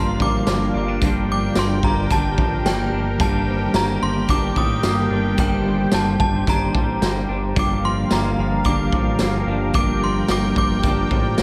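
A ringing, inharmonic FM synth chime carries the melody through ensemble chorus and delay in this blissful, reverb-soaked dream pop excerpt, over a soft-edged analog pad, a dark, tremolo-shimmering clean electric guitar, twangy, slightly broken-up guitar arpeggios in lush chorus, a thick, nasal, detuned analog bass, a gritty garage drum kit with boomy kick, pumping room sound and tambourine, and a very quiet, dry vibraphone with fast motor vibrato drifting in and out, all moving between Gm7 and Ebmaj7/G.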